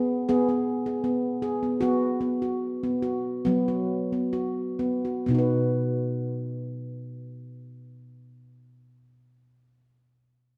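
In a lightly swung 4/4 that slows down over the first 5.3 seconds, a solo handpan plays a calm, gentle world meditation, its sharp finger strokes on nitrided steel sounding bright and ringing up front. At 5.3 seconds the piece moves into a new section, and the handpan rings on until 8.4 seconds in this fragment of a longer work. A wet echo-chamber reverb and a cassette-tape grain surround the instrument.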